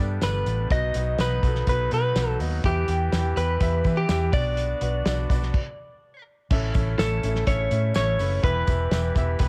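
Heard through the haze of a home cassette recording, this driving, earnest piano-driven pop excerpt at 124 BPM sets a bright, woody upright piano with audible action noise and a background oboe-stop pipe organ with chiff over a dark, foam-muted electric bass up front, joined at 0.2 s by a clean, compressed direct-recorded guitar melody, a loose small-room drum kit with tight kick and rolled-off top, and a jingly tambourine in the background, with a stop from 5.5 to 6.5 s before the new section begins.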